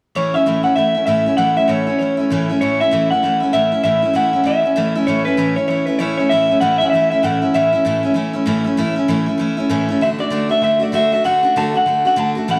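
A swung rock groove at 195 BPM drives this upbeat, rollicking cut from a longer piece in A major, with the harmony moving from A to D at 10.0 seconds. A twangy, slightly broken-up electric guitar through a small old amp carries the melody up front, its lead soaked in spring reverb and tape echo, while a full-bodied, picked dreadnought acoustic guitar plays accompaniment alongside it from 0.2 to 12.6 seconds. A moderate echo chamber lends the whole recording a roomy, lively sheen.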